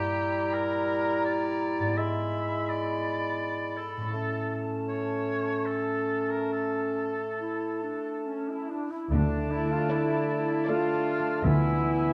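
In a triple metre with a flexible, rubato pulse, this brief classical excerpt carries a yearning, elegiac mood through a dark, warm production set in a reverberant recital hall. From the start, a clear, present clarinet, a clear oboe with light vibrato that sounds slightly distant and roomy, and a pure, metallic concert flute weave second lines above a warm bassoon accompaniment, while a ringing, fingerpicked concert harp spreads arpeggios across its broad range. At 8.3 seconds a mellow French horn section enters in the background with sustained chords, joined by a clear trumpet section playing stabs. From 9.1 seconds the harmony darkens toward a minor chord as a lush bowed cello section and a distant bowed double bass section, both expressive with vibrato, settle onto a low bass note, underpinned by very quiet, close and dry timpani struck with hard mallets. Briefly near the end, a very quiet violin section adds a soft-attack melody with a smooth top, alongside a barely audible second violin line and a rich, even viola section.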